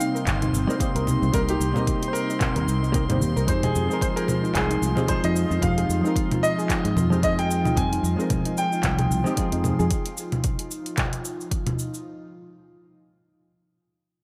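A round, foam-muted fingered electric bass stands out in this relaxed sunset chillout excerpt, entering at 0.3 seconds and sitting low beneath a gently swung 112 BPM groove in F minor. A smooth, vintage grand piano carries the melody with subtle chorus and tape echo, while a clean, compressed hollow-body jazz guitar adds dusky accompaniment through its own tape echo. An airy, breathy pad holds sustained chords in the background with a slow attack and long release, and a glassy texture of drifting overtones hovers quietly above with chorus and built-in reverb. A soft, very quiet pluck spins arpeggios with a fast attack and short decay. The piano drops out at 9.6 seconds, and the guitar, bass, pluck and glass texture fall away around 9.9 seconds, leaving the pad and drums. The rhythm comes from a punchy layered electronic kick and a deep house kit of cabasa, congas, handclaps and dark hi-hats, all set in a dreamy mix soaked in plate reverb over Cm7 and Fm7 chords.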